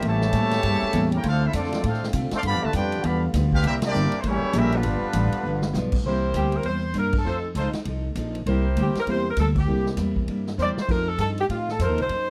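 A swinging 199 BPM big band jazz excerpt in 4/4, joyful in mood, opens with a distant, roomy trumpet section on the melody over a nasal straight-muted trombone line, mellow sustained trombone chords, picked acoustic guitar, woody pizzicato upright bass and a punchy drum kit, then at 6.0 s settles into C mixolydian as clear trumpet stabs and a dark vintage grand piano come in, shortly followed by an edgy, close-miked saxophone section with slapback echo that takes over the melody, with band accents and drum fills punctuating a dry, close 1970s-style studio sound.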